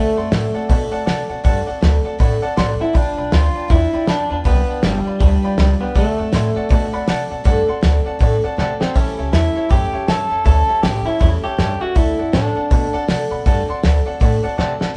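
This short cut from a longer rockabilly piece sounds like a band playing live in one room, wrapped in a moderate studio reverb that gives the retro, upbeat groove a natural sense of space. At 160 BPM in 4/4 with a swung eighth-note feel, it moves through D7, G7, D7 and A7 in D mixolydian, with drum fills at 8.6 and 14.6 seconds. Up front, an electric guitar through a small old amp carries the twangy, slightly broken-up melody until 13.0 seconds, while the cloth-damped drum kit, entering at 0.3 seconds, thuds along with a fat snare, tight kick, hi-hat and a rolled-off top. A woody, thumpy upright bass on gut strings plucks a dark low line beneath them. A picked steel-string dreadnought with fresh strings adds full-bodied accompaniment, and a brilliant, vintage-toned upright piano rings in its high register.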